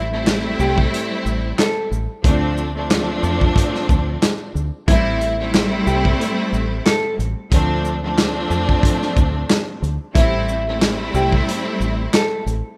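A crunchy breakbeat kit kicks in at 0.3 seconds with a tight kick, medium-tuned snare, handclaps, hi-hat and shaker, swinging at 91 BPM in 4/4 with a saturated, gritty, rolled-off sound that sits up front in this dark, reflective boom-bap hip-hop cut from a longer piece. A deep, round dub bass played with the fingers and foam-muted anchors the Am7 to Dm7 alternation, while a lush, bowed string section with vibrato and a cassette-tape coloring carries the accompaniment. A mellow, clean electric guitar plays the melody with subtle chorus and tape echo, all captured in a small room with the rough feel of a home demo.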